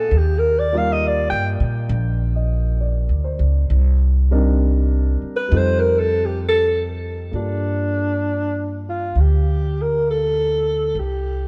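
Jazz ballad excerpt at 66 BPM with an intimate, melancholic mood, in which a breathy alto saxophone takes the solo melody with vibrato and scooped notes, over a dark, mellow grand piano and a woody, thumpy pizzicato upright bass; the harmony moves through Ebmaj9, Cm9 and F7 before settling into G minor at 7.3 s, the piano falls away at 11.0 s, and light reverb places the players further back in the room.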